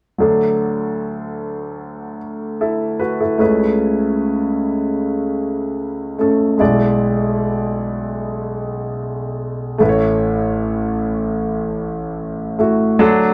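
In a straight 4/4 at 75 BPM, this hopeful, emotional pop excerpt in D major centres on a clear concert grand piano playing accompaniment from 0.2 s to 13.3 s, its intimate, up-front tone carrying audible action noise, deep bass and long sustain through a D, Aadd9/C#, E7/B, A progression, all set in a wet studio reverb with the feel of a band playing live in one room.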